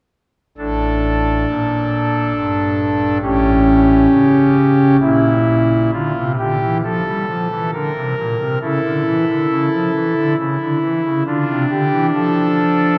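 A pipe organ on foundation stops plays alone and up front from 0.6 to 13.0 seconds, its thick, romantic voicing spanning A1 to Bb4 in this solemn, dark chorale-style classical excerpt in D minor. The piece moves in a rubato 3/4 at around 68 BPM, and a new section begins at 5.9 seconds as the harmony returns to D minor before passing through a Bbadd9 and A/C#. A cathedral reverb with a 6.2-second decay surrounds the organ, and the production leans dark and warm.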